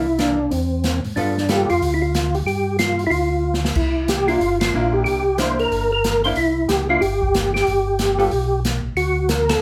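A percussive, up-front tonewheel organ with slow rotary speaker and chorus vibrato carries the melody in this bluesy, swinging soul jazz organ trio cut, over a round, mellow second organ playing the bass and clean, hollow-body archtop guitar accompaniment that stops at 1.7 seconds and returns at 4.3, while an airy acoustic jazz drum kit with dark cymbals and a boomy kick joins at 0.2 seconds and adds a brief fill ahead of the band's accents, the players captured live together in one room with moderate studio reverb.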